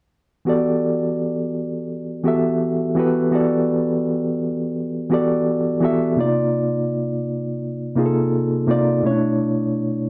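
A dark production sits in a small, wet room with a short reverb tail, giving this brief cut from a longer piece an intimate, close feel. The only part is a reed electric piano playing solo from 0.5 to 10.1 seconds, its reedy, clean tone placed direct and up front. A fast tremolo shimmers through the instrument, and a slapback echo adds a quick doubling behind each note as it ranges from B2 up to E5. The R&B groove moves in 4/4 with a swung sixteenth-note feel, and the mood is soulful and introspective. The harmony rests on Em11, shifts to Cm11 at 6.2 seconds, and arrives on Bm11 at 9.0 seconds.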